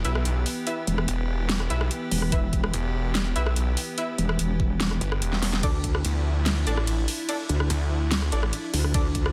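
Aggressive and menacing, this excerpt of heavy wobble dubstep at 145 BPM in a half-time feel is led by a growling, distorted sawtooth bass, joined at 0.9 s by a metallic, chorused wobble bass, while an overdriven, knocking electronic kick enters at 2.3 s under a tape-toned kit of huge snare, hi-hat, ride cymbal and rim click; a morphing, bright wavetable pad pumps against the sidechain, and bold, gritty orchestra-hit-like stabs ring out with reverb and delay, all in a dense, heavily limited mix that moves from E minor to D minor add9 at 5.6 s, just after a brief drum fill.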